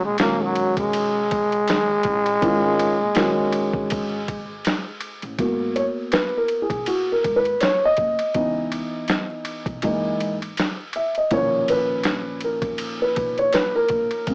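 Hip hop in a jazz-hop vein at 81 BPM with a swung 16th feel in G# dorian, this nocturnal, cool piece opens with an up-front, close-miked trombone melody that is raspy and growling, with vibrato and scooped notes, until 4.6 s, over a woody pizzicato upright bass in the background and a gritty, pitched-down, compressed boom bap sampler kit with a thumpy kick, medium-tuned snare, hi-hat and ride, while a dark, mellow, boxy grand piano with audible action noise and deep bass takes a solo from 5.4 s across G#m9, C#m9, F#13 and Bmaj9#11, all framed by a home-cassette sound with vinyl crackle, small-speaker tone and a moderate booth ambience.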